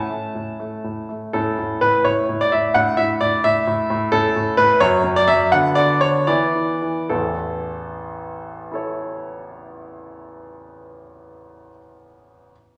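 In a rubato 6/8 at 71-88 BPM by the dotted quarter, this graceful, cheerful classical-period piano sonatina fragment in A major, tuned to A4 = 436 Hz, features a solo baby grand piano, polished and up front and spanning A1 to A5, that slows from 3.4 to 7.1 seconds through a progression moving from A and Asus4 to F#5, Bm/D and E5 before settling back on A, all bathed in a wet recital hall reverb.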